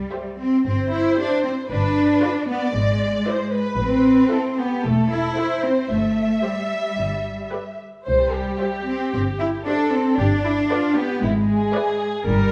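Graceful and lively, this quick classical-period movement for string orchestra in C major moves at 114 BPM, with a close, rich cello section up front on the bass and a smooth double bass section beneath it, a very quiet, even violin section carrying the melody, a lush violin section with soft attack and expressive portamento on the second line, and a focused viola section in the background, all within the moderate reverb of a hall as the harmony circles from C through G7 and E7/G# to Am before the passage is cut off at 12.5 seconds.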